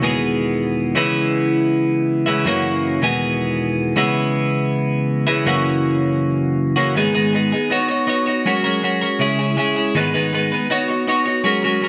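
Cool and bittersweet, this rock fragment cut from a longer piece features a lone twelve-string electric guitar, bright, twangy, clean and compressed, picked up front through a stone room's wet reverb as the band plays live in one space, cycling through Emaj7, C#m7 and F#7 before turning at 7.0 s to a G#m, Badd9, F#add9 and C#m progression.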